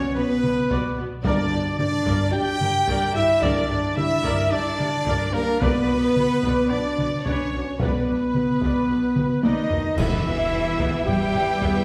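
In a straight 4/4 pulse, heavy-sticked taiko drums with a vintage, band-limited sound drive this dark, dramatic cinematic excerpt from an epic orchestral score, while mellow French horns hold up-front sustained chords and a brilliant solo trumpet punches out classical-style stabs. Two rich, vibrato-laden violin sections carry the melody and a second line. Smooth, distant violas, expressive cellos and woody double basses fill out the accompaniment and bass beneath them, and timpani sound briefly in the background. A drum fill at 9.2 seconds leads into a band accent at 10.0 seconds, where dark clash cymbals with concert bass drum and a close, warm string section join an airy, very quiet silver flute, all set in a wet recital-hall reverb.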